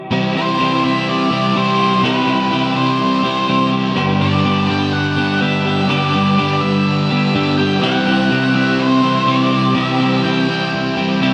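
At 0.1 s, a dreamy, blissful rock passage in C major opens with three guitars together, moving at 124 BPM in a straight 4/4. Up front, a crunchy overdriven guitar plays a picked riff tinged with reverse reverb. Beside it, a dark, thick fuzz guitar carries its own riff, made heavier by distortion and ensemble chorus. Further back, a compressed guitar at the edge of break-up picks arpeggios through lush chorus and tape echo. At 0.4 s, an octave-fuzz lead guitar comes in up front with a warm, distorted melody trailed by tape echo, and it stops at 10.7 s. The harmony moves from C to G and back to C, and this short cut from a longer piece is soaked in a wet hall reverb that gives the mix its hazy, floating glow.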